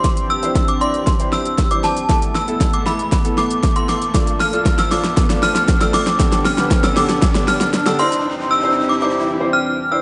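A driving, confident dance-pop build-up opens at once with every part sounding together: a ringing FM synth chime carries the melody up front, its inharmonic, fast-attack tones decaying into a long release thickened by ensemble chorus and digital delay. Beneath it, a clear grand piano plays intimate accompaniment with audible action noise, while a shimmering, retro pulse-width pad holds slow-attack sustained chords built from detuned pulse, sawtooth and square waves with a sub octave; both piano and pad pump against a sidechain. A layered deep house drum kit sits up front, its punchy kick, fat snare, metallic hats and shaker pushed through overdrive, and the whole passage works as a drum fill until the kit stops at 8.2 seconds. An electronic riser hovers in the background until 9.3 seconds. The harmony moves through Cadd9, Asus2, Dm and Gadd9/D before returning to Cadd9, all in a straight four-beat feel. 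The sound is a rough home demo mix with light reverb and digital ambience, its top end capped at 10.3 kHz, and it is cut from a longer piece.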